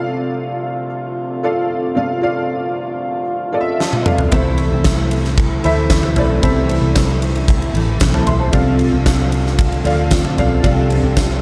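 Piano-driven pop at 114 BPM in 4/4 with a hopeful mood, this excerpt opens on a dark, woody upright piano treated with analog chorus, set over distant, mellow brass holding sustained chords on Dm/C, and the piano plays a fill at 3.5 seconds. A huge arena drum kit with a fat snare and punchy kick fills in at 3.8 seconds, and by 4.3 seconds a round, foam-muted fingered electric bass and a full-bodied, picked jumbo acoustic guitar riff with finger squeak and ensemble chorus arrive as the harmony moves to Am and then Dm. A jingly tambourine sits very quietly close by from 4.9 seconds, and a moderate plate reverb soaks the whole mix in a dreamy haze.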